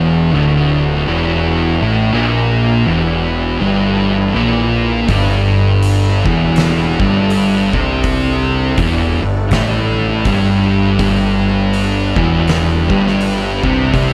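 A dry sound frames this hypnotic, sludgy stoner and doom metal passage at 81 BPM with a swung 4/4 feel, moving from Em9b5/D to G5. Two thick, up-front fuzz guitars, one warm and one dark, grind out the riff over a bright, overdriven picked electric bass, while a very quiet, detuned organ-like drone with a slow attack and chorused shimmer sustains chords underneath. At 5.1 seconds an oversized, low-tuned acoustic drum kit with a fat snare, punchy kick and rolled-off top joins in, carrying the fragment to its cut at 14.1 seconds.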